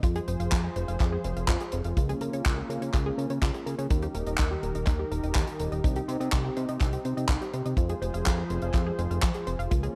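Italo disco with a bittersweet, danceable feel, cut from a longer piece, where a tight, dry kick sits up front beside a fat, nasal, saturated analog bass, while a smooth, chorused pad holds sustained chords, a round analog pluck spins arpeggios through chorus and tape echo, and a damped 70s kit adds handclaps and hi-hat with studio reverb in a close, dry 1970s-style room over the progression Fm, Db6, Eb, Cm.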